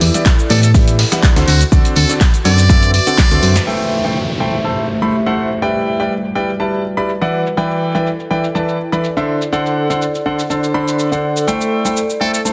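Opening on a clear, up-front concert grand piano riff with sidechain pumping and digital delay over a round FM bass, a gritty sampler-style breakbeat kit, an analog drum machine, a faint tambourine and a warbling, nostalgic tape-like pad, this energetic, bittersweet piano house cut at 123 BPM in A dorian adds a punchy electronic kick at 0.3 s and brings in a buzzy, brilliant muted trumpet at 0.5 s. A drum fill then hands over at 3.7 s to a downlifter and a filter sweep on the drums as the kick, bass, breakbeat kit, tambourine and trumpet fall away, leaving piano, pad and filtered drum machine in a lush hall reverb.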